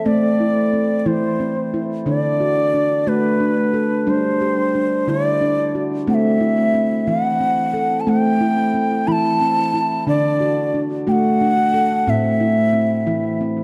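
Hypnotic and meditative, this short world excerpt drifts at 60 BPM in a straight 6/8, moving through A dorian chords from Am to D and G5 and back to Am. A ringing, stainless-steel handpan sounds fingertip-struck and boxy, and plays arpeggios up front from the start to 13.6 seconds. Above it, a breathy, bright bamboo bansuri carries the melody with a straight tone, soft attack and a slightly unsteady, close-miked presence, both parts touched by tape echo within a wet echo-chamber reverb and a dark, warm production.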